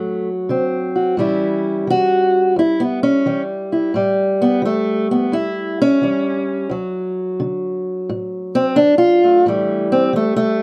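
Acoustic country blues with a gritty, rollicking mood, set in 4/4 with a swing feel on the eighth notes. A lone fingerpicked steel-string acoustic guitar carries the whole passage, playing solo from 0.0 to 10.6 seconds across a range from D2 up to F#4. Its parlour-style tone is dark and boxy, sitting up front in the mix. The harmony moves from D7 to A7, then settles on D before landing on A5 near the end. Light reverb gives the guitar a little space, and this short passage is cut from a longer piece.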